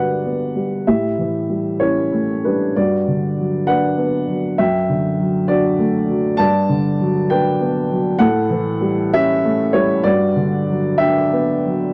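A dark, woody upright piano plays alone from 0.0 to 11.9 seconds in this tender, peaceful neoclassical minimalist passage cut from a longer piece, drifting in a rubato 6/8 through Gmaj7, A7 and D/F# chords with long sustain, set up front in a dry, close 1970s-style studio sound touched by light reverb.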